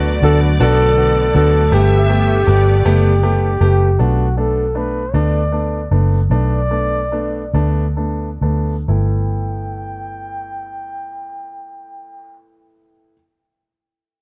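A six-eight pop ballad in G major, romantic and swaying at 43-54 BPM in dotted quarters, cut from a longer piece and easing back in tempo between 4.0 and 8.9 seconds. A breathy flugelhorn carries the jazz-style melody with light vibrato and scooped notes over clear, polished baby grand piano and a dark, round, foam-muted electric bass sitting up front, while a bowed violin section adds a smooth second line and a very quiet, detuned sawtooth pad with slow attack holds chords, both gone by 4.0 seconds. The recording has light reverb and small-room ambience, colored by worn cassette-tape warble and pitch drift.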